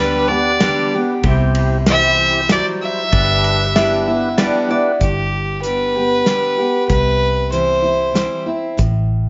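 Down-home and easygoing, this short honky-tonk and classic country excerpt in G major moves at 95 BPM in 3/4, with an up-front, clear fiddle carrying the melody over a fat, lightly overdriven tonewheel organ on slow rotary speaker that drops out at 4.9 seconds, a bright, full-bodied picked jumbo acoustic guitar, a dark, round, foam-muted electric bass and a natural country drum kit with a punchy kick entering at 0.6 seconds, while a metallic, nasal lap resonator guitar slides in briefly as a second line from 3.8 seconds, all in a moderate large-studio reverb.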